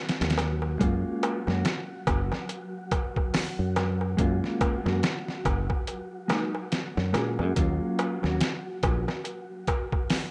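An airy, breathy wind-like texture opens this dark, cinematic trip hop passage, sitting in the background with its built-in reverb as a sustained tuned haze. At a languid 71 BPM with a swung sixteenth-note feel, a sampler-style drum kit arrives almost at once, pitched down and overdriven, with a thumpy kick, a medium-tuned snare and hi-hat pushed up front. A growly, punchy fingered electric bass with tube saturation sits just as forward, and a clay-shelled darbuka adds natural-skin hand percussion with a live-room feel. From 0.8 seconds a mellow, clean electric guitar enters over the Gbmaj9 chord, its fingered tone coloured by tremolo, tape echo and a lo-fi 12-bit sampler grit. The harmony moves from Eb minor to that Gbmaj9 and then to Ebm7 near 7.6 seconds, and the whole cut, taken from a longer piece, has the light reverb and rough, homespun character of a home demo.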